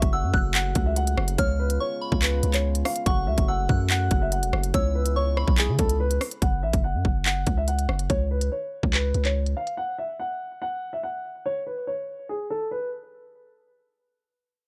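A half-time drill groove drives this dark, ominous hip hop excerpt, built from an electronic kit with a hard-clipped kick, crisp hi-hats, handclaps and rim clicks, all sitting up front with a tape-warm edge. Beneath it, a long 808-style bass with a deep sine tone hits with a fast attack and then decays, anchoring the harmony. A mellow, boxy concert grand piano carries the melody in a dusky upper-middle register, softened by a low-pass filter. At the start, a soft FM synth bell adds a pure, gentle second line high above with chorus, phaser and delay, while a distant, roomy French horn section holds classical-style sustained chords; both drop out at 6.4 seconds, when a filter sweep begins. The drums fall away at 9.8 seconds, leaving the piano to continue alone until 12.9 seconds in a dry mix.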